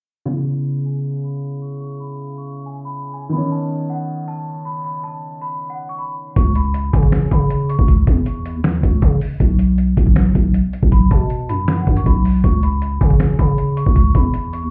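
Muffled as if heard through a wall and bathed in club reverb, this eerie, brooding hip hop and trap excerpt at 158 BPM moves in a half-time feel in C# minor, opening with a delicate, bell-like celesta melody shaped by a low-pass filter and digital delay over long-sustaining warm baby grand piano chords under a filter sweep. At 6.4 seconds the piano drops out as a growling, buzzy 808-style bass and an up-front, gritty, pitched-down sampler drum kit with a thumpy kick, snare, hi-hat and finger snaps enter, while the celesta carries on until 7.9 seconds before its airy tones return at 10.9 seconds.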